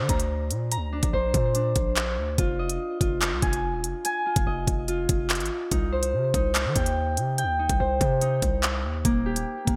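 A half-time drill groove in 4/4 at 144 BPM drives this dark, tense hip hop fragment, with the drum kit entering at 0.1 s: a knocking kick, crisp hi-hats and handclaps, electronic and up front, coated in gated reverb. Beneath it, a hard-hitting 808-style bass spans Eb1 to Eb3, its sine tone carrying a noise layer that gives each punchy, heavy note a fast attack before it decays. A mellow Celtic harp, thumb-plucked and ringing, plays arpeggios between Bb3 and Bb5 through a low-pass filter and delay, sitting just as far forward as the beat. The harmony in C minor moves from Bbadd9 to Fm7, then Cm at 5.7 s and Eb at 9.1 s, all tuned to A4 = 444 Hz. Light reverb and a bright 1980s-style digital production frame the roughly ten-second passage.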